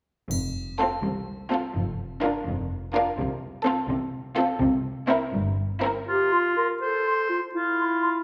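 A straight 6/8 pulse at 83 BPM carries this playful, whimsical film cue in F major, cut from a longer piece, where a bright triangle chimes briefly at the start as bowed double basses and lush, up-front cellos settle in, joined by smooth violas, a clear violin melody and a richer, more distant second violin line, before a mellow clarinet and a warm oboe enter at 6.1 seconds and an airy flute ensemble in the background follows just after, together carrying the magical, quirky close, set in a reverberant scoring-stage space.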